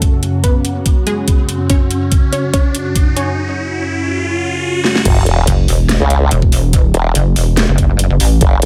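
A heavy, chaotic stretch of wobble dubstep in a half-time 4/4 feel, cut from a longer track. It opens as a build-up: a lush, detuned sawtooth pad holds thick sustained chords with chorus and sidechain pumping while a filter sweeps across it, and a bright, punchy unison pluck carries the melody through digital delay until 3.4 seconds. Underneath, a knocking, up-front electronic kick and a tape-warm dubstep kit with a huge snare, metallic hats and crash cymbal drive the groove, with drum fills along the way, while an electronic riser climbs toward the drop. At 5.1 seconds the drop lands with an impact and sub drop, and a formant-sweep wobble bass enters, a sawtooth-and-sine tone that wobbles through chorus and overdrive. A detuned, saturated pulsing wobble bass joins at 5.5 seconds, both basses sitting up front beneath the drums in a digital ambience.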